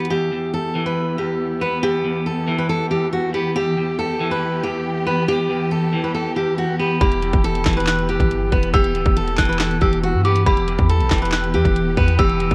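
A full-bodied steel-string acoustic guitar carries the melody up front, fingerpicked and trailed by tape echo, over a clean picked electric guitar and a dark, bowed string section holding expressive sustained chords in the background, setting a melancholic, brooding half-time trap mood. After a brief drum hit at the very start, the trap kit returns at 7.0 seconds with a hard-clipped kick, sharp snare, bright hats and handclaps, joined by a deep, boomy 808-style bass and an eerie, inharmonic detuned synth bell with chorus and tape echo playing a high second line. The mix is dry and coloured by worn cassette tape with a warbly pitch drift, and the excerpt is cut from a longer piece.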